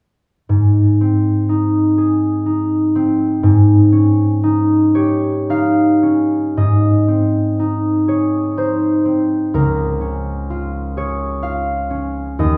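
Set in the wet reverb of a recital hall heard from further back in the room, this graceful, peaceful fragment of a longer classical piece features a solo concert harp, thumb-plucked, ringing and up front, playing from 0.5 to 12.6 seconds in a rubato 3/4 at 54-64 BPM in Ab major, spanning Db2 to F5 and moving from Ab through Eb7/Ab before a second section turns from Ab to Db at 9.5 seconds.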